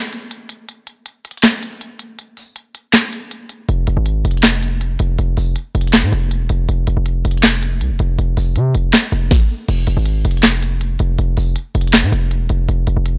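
A half-time trap groove at 160 BPM drives this dark, menacing hip hop cut in F harmonic minor, opening with the overdriven electronic kit alone on a knocking kick, sharp snare, crisp hats, handclaps and crash. At 3.7 seconds a punchy, heavy 808-style bass drops in up front, its sine tone layered with noise, spanning E1 to C3 with a fast attack and decaying tail. The sound is dry and gritty, with transformer saturation and cassette tape coloring the mix, and the drums carry the character of being re-recorded in a small room.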